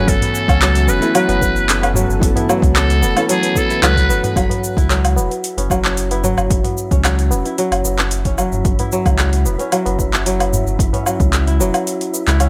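Light studio reverb frames this earthy, mystical piece of organic downtempo, where a buzzy, growling metal-muted trumpet melody with digital delay, a soft felt-muted upright piano accompaniment with sidechain pumping and a blurred granular cloud pad open the cut and fall away by 4.4 seconds, leaving crisp fingerpicked kora arpeggios, a round sub bass, an up-front overdriven afro-pop kit of metallic hats, cabasa, handclaps and woodblock, a punchy electronic kick and a low-tuned, ringing tabla in the background, joined at 5.4 seconds by a dark, airy wind-like tuned noise texture.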